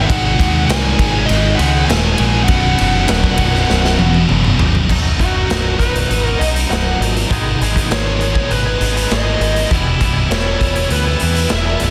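Anthemic and cathartic, this quiet-loud alternative rock excerpt moves at 100 BPM in B major, with a dark, smooth overdriven lead guitar soaked in plate reverb and analog delay carrying the melody over a heavy high-gain guitar riff, a thick fuzz guitar, and a punchy picked electric bass. A raw garage drum kit sits up front, gritty and saturated in a bright stone room with a punchy kick, and plays a fill from 3.7 seconds. At 4.9 seconds the fuzz guitar stops, the lead breaks into a solo over B, G#m and Em, and a twangy clean guitar joins with tremolo and delay-washed arpeggios, all within a dense, heavily limited modern master.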